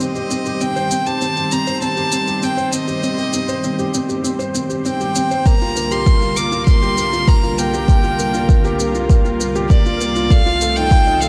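Moving and melancholic, this piano and strings electronica build-up sets a clear, floating violin melody with delay and shimmer reverb over a mellow, felt-muted upright piano riff with audible action noise, also delayed, and a thick, warbling, detuned sawtooth pad that pumps beneath its chorus, while a high-passed, tape-warm shaker runs throughout and a deep, up-front electronic kick joins at 5.5 s, inside a lush hall reverb.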